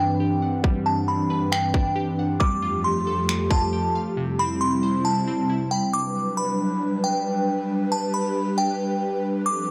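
A half-time 4/4 pulse at 136 BPM carries this floating, blissful cloud-rap hip hop fragment in G major: an overdriven trap kit of finger snaps and hard-clipped kick sits up front from 0.6 to 3.6 seconds, a breathy, sidechain-pumping pad holds sustained chords, a crystalline FM synth bell with chorus and analog delay sings the high melody, and bright digital keys ripple arpeggios under a filter sweep until 5.9 seconds, set in a dry, gritty hardware sound with light reverb and transformer saturation.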